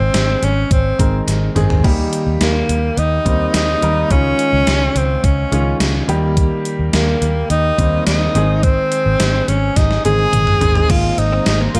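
A breathy, intimate tenor saxophone sings a romantic, uplifting melody with vibrato and a touch of delay over clear grand piano and a dark, foam-muted fingered bass in this 1980s-style pop excerpt, joined almost at once by a thumpy, up-front drum machine with a gated-reverb snare, before a clean, direct-recorded electric guitar riff enters in the background at 10.9 seconds and a detuned sawtooth pad with chorus arrives at 11.2 seconds.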